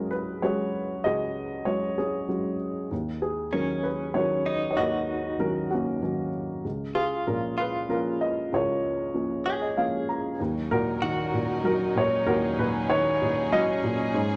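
Acoustic folk-pop ballad in Eb minor at 96 BPM in a straight 3/4, carrying a heartbroken, melancholic mood in this excerpt from a longer piece. An upright piano leads the melody from the start, its woody, slightly detuned tone sitting up front and ranging from deep bass notes to high treble. At 3.5 seconds a clean, direct-recorded electric guitar joins with picked, compressed arpeggios in a narrow middle register, colored by a tremolo effect and also placed close to the listener. The piano plays a fill at 9.1 seconds, and at 10.4 seconds a chamber string section enters softly beneath, bowing sustained chords sul tasto with light vibrato for an intimate, close ensemble sound. The harmony moves from Dbsus4 through Ebm7 and Bbm/Db before returning to Ebm7, all within a light reverb that keeps the sound warm and unhurried.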